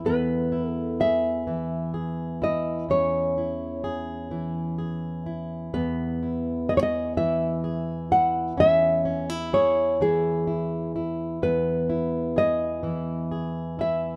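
Intimate and nostalgic, this brief excerpt of an acoustic folk-pop ballad moves slowly in 6/8 at 42 BPM, counted in dotted quarters, with a straight feel in E major. A fingerpicked, plugged-in jumbo steel-string acoustic guitar gives full-bodied accompaniment from the start, alternating between E and C#m/E. From 0.1 seconds, an up-front, thumb-plucked classical nylon-string guitar carries the warm melody above it, all set in a light reverb.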